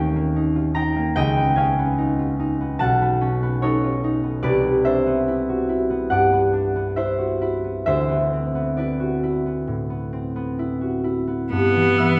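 Rubato 4/4 pulse drifting between 62 and 75 BPM carries this dreamy, luminous impressionist classical excerpt for cello and harp. An up-front concert harp, thumb-plucked and ringing, spans the low to high register, unfolding lush chords from Eb9 through C#9, B9, Cmaj9 and D13 to G6. A single bowed cello, rich and focused with vibrato and a smooth top, enters up front at 11.5 seconds on a B3 just before the fragment closes at 12.2 seconds, all bathed in the wet bloom of a scoring-stage reverb.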